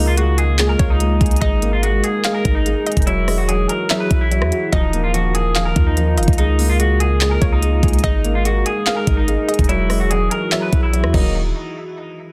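A deep, boomy 808-style bass sits up front with a knocking trap drum kit of crisp hi-hats, kick, handclaps, rim clicks and crash cymbal in this menacing, brooding half-time hip hop excerpt, as a slightly broken-up, twangy electric guitar melody with low-pass filter and delay rides over a mellow grand piano, a moody detuned analog pad with chorus, and a hollow, nasal square pluck line that enters in the background at 0.8 s.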